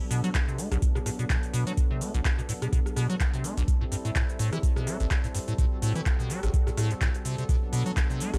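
A lightly reverberant, raw and trippy acid house excerpt at 126 BPM in 4/4 with 55% swing on the sixteenths, set in B phrygian with tuning at A4 = 437 Hz, moving from Bm7 to Am7 at 3.7 s and back to Bm7 at 7.5 s. Up front, an overdriven, deep analog kick and a squelchy, hollow, resonant square-wave acid bass riff with tube saturation, lush chorus, filter sweep and sidechain pumping carry the track, while an electro drum machine adds overdriven handclaps, metallic hi-hats, rim click and shaker, both drum parts re-recorded in a large room. Beneath them, a smooth, warbling, detuned vintage pad of sawtooth and wave-folded sine holds soft-attack chords with chorus and sidechain pumping.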